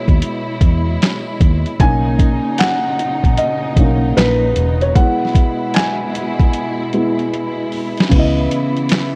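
A felt-muted upright piano opens the clip with a soft, intimate tone, its action noise audible and its sound carrying cassette tape coloring, while a lush, bowed string section sustains chords from a distant place in the mix. This is melancholic, reflective lo-fi hip hop at 76 BPM in 4/4, with a 65% swing on the sixteenths, moving from a rootless F#9sus4 through Bmaj9 and back before settling on C#m9 at 8.1 seconds. The piano takes a solo through the first 8.1 seconds, sitting up front with a mellow, vintage character. At 0.1 seconds a sampler-style boom bap kit arrives, compressed and pitched down, with a gritty edge, a thumpy kick, a medium-tuned snare, hi-hat, handclaps and crash cymbal, and it plays a fill from 6.5 to 8.1 seconds. A dark, round, foam-muted fingered electric bass enters alongside the drums and drops out at 8.5 seconds. A light reverb and cassette tape texture color the whole mix, and the clip is cut from a longer piece.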